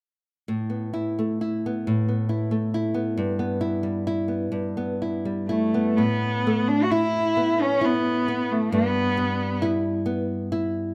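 A rich, smooth bowed cello with vibrato enters at 5.5 seconds to sing a wistful, tender melody over a woody, fingerpicked nylon-string guitar on old strings, which plays alone from 0.5 seconds, moving from Asus2 to G6 in this short excerpt of a Celtic slow air in a rubato 3/4 at 66 BPM, tuned to A4 = 439 Hz, with both instruments close and detailed in a recital hall's moderate reverb.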